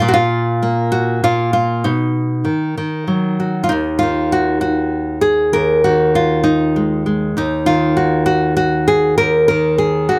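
A bright, up-front nylon-string guitar, fingerpicked in a classical style, carries this wistful, intimate folk excerpt in Eb minor at 66 BPM in a straight 6/8, moving from an unaccompanied opening through a B chord at 1.8 seconds to Ebm at 3.7 seconds, where a new section begins, all captured by close, detailed microphones with light reverb.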